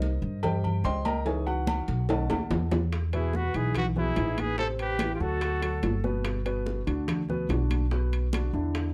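Afro-Cuban jazz at 144 BPM in a straight 4/4, this short, lively and danceable cut from a longer piece opens with a dark, mellow upright piano playing solo against the rhythm section, its intimate tone carrying audible action noise. Beneath it, a woody, thumpy pizzicato upright bass with gut strings sits up front, while bright, high-tuned congas, tight vintage-sounding cowbell and bongos played with soft hands, and ringing metal-shell agogo bells and timbales, entering at 0.4 seconds, fill out the percussion. A drum fill leads into the second section at 2.9 seconds, where the harmony moves from Cm7 and Dbm7 through B7 to Emaj7. At 3.1 seconds a jazz-style trumpet with light vibrato takes the melody up front, joined almost at once by a breathy silver concert flute with a crisp attack and rolled-off highs on a second line, both dropping out at 6.0 seconds as the chords pass through Am7, D and Gmaj7 to Bm. 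The close, detailed recording has little reverb, keeping each part present and clear.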